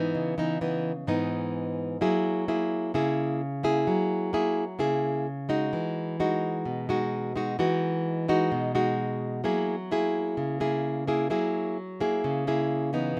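A straight 4/4 bossa nova pulse at 129 BPM carries this romantic, sophisticated 13.2-second cut from a longer piece, played by a solo nylon-string guitar. The fingerpicked classical guitar sits up front with a warm, full-bodied tone and fresh strings, ranging from G#2 to G#4 under light reverb. It moves through rich extended chords, C#m9 to F#9, then Emaj9 at 5.7 seconds before returning to F#9.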